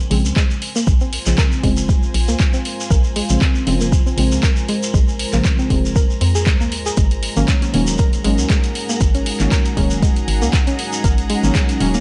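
Late-night and moody, this deep house excerpt in Bb minor moves at 118 BPM with a swung 16th-note feel, shifting from Bbm9 to Ab9sus4 at 7.0 seconds. An overdriven, layered kick sits up front from 0.4 seconds over a hollow, bouncy FM bass, a tape-warm analog drum machine with handclaps and hi-hat, and a grainy acoustic shekere, while detuned chord stabs and soft, round pluck arpeggios carry chorus and analog delay. A dark sawtooth pad with built-in reverb enters at 0.7 seconds and lingers in the background alongside a clear symphonic string section with light vibrato that fades in; the pad, bass, strings, pluck and stabs all pump with the sidechain, and the mix is dry and gritty with vinyl crackle.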